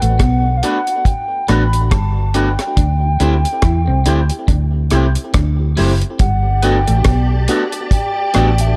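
Lovers rock reggae with a smooth, sweet mood, heard in a short cut from a longer piece, with a gentle swing on the sixteenths. A deep, dry drum kit with a tight kick, hi-hat and rim click sits up front beside a round, punchy, foam-muted fingered bass, together anchoring the groove from the start. Two electric guitars through a small old amp add warm, slightly broken-up tones: one, picked and twangy, plays a riff bathed in lush chorus, while the other, compressed and in the background, adds stabs from 0.6 seconds, when a glassy FM electric piano with a bell-like attack and warbling chorus and tape echo also enters. Above them, a hollow, woody clarinet-like synth lead carries the melody with vibrato, chorus and tape echo. The harmony moves from Gmaj7 to D9sus4, and at 6.2 seconds, as it settles on Gmaj9, a silky string machine with a slow attack and ensemble chorus joins with a second line, all within a small room ambience.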